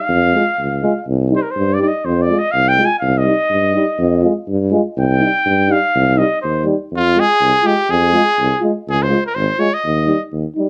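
A mellow trumpet opens this fiery, virtuosic Balkan folk excerpt at 0.0 s, carrying a second line up front in a classical style with light vibrato. A warm, present tuba anchors the bass almost at once, and a pair of euphoniums fill in the accompaniment: one dark and smooth-topped, set back in the background, and the other holding lower notes beneath it. The music moves at 123 BPM in a swung 2/4 and begins in C minor, with the harmony swinging between F minor and C minor. At 6.9 s the key shifts to F minor, and a clear trumpet takes the melody up front from 7.0 s with a smooth top and light vibrato, as the chords move on to D-flat and E-flat. A moderate small-room reverb gives the brass an intimate, close-knit sound.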